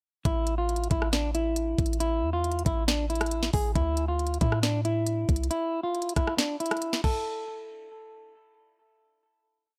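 Menacing and melancholic, this short trap hip hop piece moves at 137 BPM in a half-time feel, with a dark, clean semi-hollow electric guitar looping a tape-echoed melody like a sample over a boomy 808-style bass of long sliding sub notes and a knocking, crisp trap kit with fast hi-hat rolls, all dry and gritty, before the guitar rings on alone into a final hit until 8.5 seconds.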